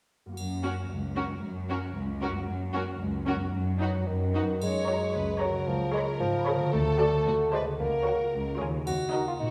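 Cinematic, playful and mischievous, this whimsical film cue in F# major moves at 113 BPM in a straight 2/4, with ringing concert harp arpeggios and a warm, up-front cello section bass underpinning lush violins carrying the melody against a distant second violin line, expressive viola accompaniment with portamento, a dark solo bassoon entering at 3.8 seconds, and close triangle touches, all in the wet reverb of a scoring stage as the harmony turns through C#7, D and D7 before ending on D#m in this cut from a longer piece.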